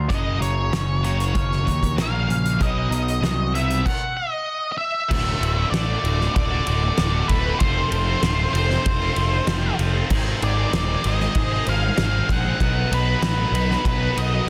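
A clean, twangy electric guitar with phaser picks arpeggios over a round, overdriven fuzz bass up front, joined by a dark octave-fuzz lead melody with digital delay, a scooped high-gain riff guitar and a loose indie drum kit with a fat snare and punchy kick, in this restless, anthemic quiet-loud alternative rock excerpt at 96 BPM in 4/4. After a stop from 3.9 to 5.1 seconds, a bright, heavier distorted riff guitar enters in the background along with a very quiet, vintage string machine of violas holding mellow sustained chords, as the harmony moves from D through F and G# to B. The sound carries a light studio reverb and a dense, heavily limited modern master.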